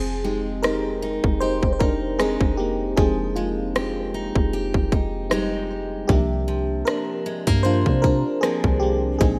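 A lightly swung 77 BPM pulse in 4/4 sets up this moody, longing contemporary R&B fragment in F dorian, where a glassy, bell-like FM electric piano with chorus takes the lead up front over a deep, round 808-style bass and picked steel-string acoustic guitar arpeggios carrying tape echo, while an overdriven trap kit of hard-clipped kick and rim click joins at 0.6 s, the harmony moving from Fm9 to C9sus4 at 6.1 s in a rough home-demo mix with light reverb.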